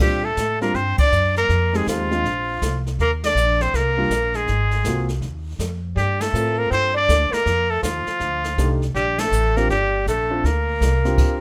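A trumpet with a straight mute carries the melody up front, its nasal, bright tone smoothed at the top in a jazz style. Beneath it a tenor saxophone plays a second line with vibrato and a soft, vintage attack. A dark concert grand piano accompanies with mellow chords that carry deep bass. The plucked upright bass sits up front, woody and growly on steel strings, while a brush kit in a natural studio room adds dark cymbals, a medium-tuned snare and a boomy kick. This swinging, warm small-group piece in the swing and bop vein is cut from a longer performance, with band accents near 0.9, 3.2, 6.2 and 9.1 seconds under a light reverb.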